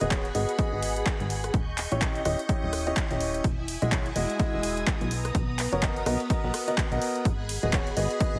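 A brilliant, up-front grand piano riff, low-pass filtered, echoed by digital delay and sidechain-pumped, leads this energetic, soulful piano house excerpt at 126 BPM in G# minor, swung on the 16ths and moving through G#m7, D#7b9, Emaj9 and Bmaj7, over shimmering vintage string-machine violin chords with ensemble chorus and pumping, a funky, plucky analog bass that also pumps, an overdriven analog drum machine of handclaps, hi-hat and rim click, and a dry, punchy electronic kick entering at 0.1 s, set in light reverb with a heavily compressed radio sound.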